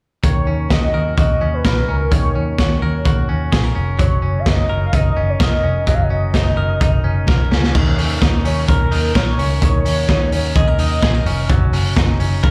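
Jangly indie pop in Eb minor at 128 BPM, bittersweet and wistful, heard as a live club gig through the venue's PA with small-room reverb, where a gritty, muffled garage drum kit with a punchy kick sits up front beside a dark, round muted bass, a bright, twangy clean guitar picks arpeggios with slapback echo, and a velvety sawtooth synth lead with chorus, vibrato and delay carries the melody until 11.2 s, with a drum fill at 7.3 s leading into a new section at 7.7 s.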